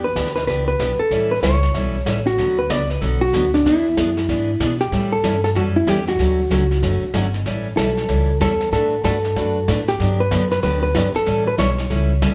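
A dark, clean hollow-body electric jazz guitar carries the melody up front, its fingered lines sounding compressed as they move through a swung, cheerful western swing groove. Underneath, a picked steel-string acoustic guitar supplies bright accompaniment with audible finger squeak, heard in an auditorium-like space. The upright bass is plucked and sits up front, woody and thumpy with steel strings. A vintage brush kit joins at 0.2 s, with a medium-tuned snare, hi-hat and brushes, its tone warm and rolled off at the top and heard as if in a small room. The playful country excerpt cycles through jazzy chords such as Em7, A7, D6, Dmaj7 and Gmaj7, and the band sounds as though it is playing live together, bathed in a large, wet studio reverb.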